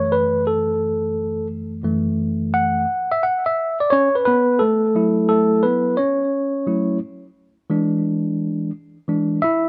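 A mellow, cool hip hop fragment opens on a lone tine electric piano, heard from the first moment and playing solo throughout its 9.7 seconds. The tempo sits at 87 BPM in 4/4 with a swung sixteenth-note feel, and the music rests in F# minor, tuned slightly low to A4 = 439 Hz. The piano's tone is warm and clean, coming through its built-in speakers and placed up front, with a slapback echo trailing each phrase. It ranges from F#2 up to F#5, settling on an F#m7 chord before moving to E7 at 7.4 seconds. The sound is dry and open-air, with little reverb and an outdoor setting that leaves the instrument unadorned by room ambience, and the passage is cut from a longer piece.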